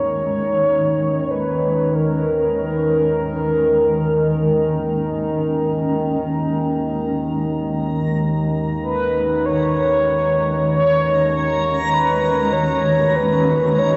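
Floating in free time, this dark ambient drone excerpt feels desolate and cavernous, tuned to A4 = 441 Hz and resting on a single Gbadd9/Eb chord. An up-front, nasal analog drone with chorus holds the low Eb2 to Eb3 register, a cloudy, blurred granular pad fades in with sustained chords, and a round, horn-like synth lead with chorus, vibrato and tape echo sings a mellow melody between Bb4 and Db5. At 8.0 s a reversed, dreamy swelling texture enters on a high Bb5, all bathed in a huge reverb and the warbling pitch drift of worn cassette tape.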